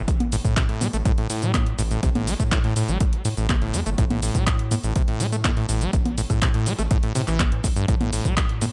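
Trippy and hypnotic, this short acid house excerpt runs at 123 BPM in a straight 4/4 in A minor, tuned slightly low to A4 = 438 Hz. A squelchy, resonant sawtooth acid bass carries the riff up front across the full 8.7 seconds, ranging from A1 to A3 as its filter sweeps, roughened by vintage 12-bit sampler grit and trailed by tape echo. Beneath it, a round analog bass built from square and sine waves with a wave-folded, evolving tone sits mellow in the background between G1 and A2, pumping under sidechain compression. An overdriven, punchy electronic kick drives from the front, joined by an analog drum machine, also overdriven, supplying congas, handclaps, hi-hat, rim click and shaker. The mix has light reverb and digital ambience, with a dark top end that rolls off above 11.0 kHz.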